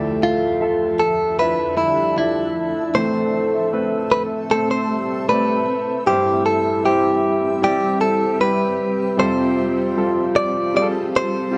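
Light reverb gives this cut from a longer pop piece the feel of a band playing live in one room, with a longing, emotional mood at 77 BPM in A minor. A compressed, up-front clean electric guitar, picked and recorded direct, carries the melody from 0.2 seconds over an intimate grand piano whose action noise is audible, while a dark, distant French horn section with light vibrato adds a roomy second line. Alongside them, a cloudy, detuned granular pad with slow attack and its own reverb holds blurred, evolving chords through Dmadd9, Amadd9, C/G and Fadd9.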